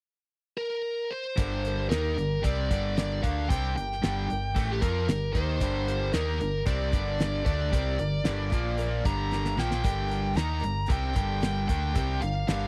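Dry, close and with little reverb, this gritty classic rock fragment has the feel of a 1970s studio session, cut from a longer piece. A bluesy lead guitar opens on its own at 0.6 seconds, its distorted, picked tone sitting up front with a slapback echo as it carries the swaggering melody. At 1.4 seconds the full band arrives on a G minor chord: a pair of overdriven rhythm guitars, one bright and one crunchy, play riffs in the background, while a shimmering, boxy twelve-string acoustic adds octave-doubled picking behind them. A fingered electric bass, dark and round, sits prominently beneath, and a damped drum kit with a fat snare, tight kick and hi-hat drives in a straight 4/4. The harmony moves briefly to a Bb5 power chord before returning to G minor, and a drum fill at 9.3 seconds punctuates the groove.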